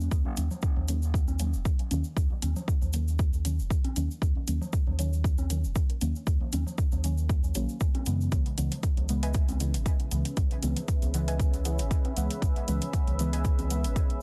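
A dense, heavily limited modern master with little reverb frames this cavernous, hypnotic dub techno excerpt in Eb phrygian at 117 BPM, where an up-front deep kick, metallic electronic hi-hats, a round, soft sub bass and a grainy acoustic cabasa drive a lightly swung 4/4 groove while distant, tape-warm congas pump and echo in the background. Deep, mellow chord stabs, detuned and wave-folded with chorus, phaser, sidechain pumping and dub echo, move from Ebm7 to Dbm7 at 8.3 seconds. Near the end a warbling, lo-fi pluck riff with chorus and echo arrives at 9.2 seconds, followed at 9.7 seconds by a moody, full-bodied analog pad with a slow attack and long release.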